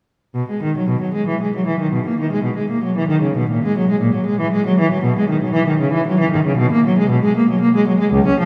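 A lone bowed cello enters at 0.3 seconds, playing a baroque-style suite movement in B major with a serene, radiant mood. Its tone is dark and reedy, with the gut-string character of period style and a smooth top, and the single player stays up front in the sound. The movement sits in 3/4 at around 116 BPM, but the beats fall unevenly, and the rubato gives the phrasing a free, breathing quality. The line moves across the instrument's range from C#2 to C#4. A wet cathedral reverb, with a decay of 5.1 seconds, surrounds the playing, and the room sounds as if heard from further back. This short passage, cut from a longer piece, runs until 8.5 seconds.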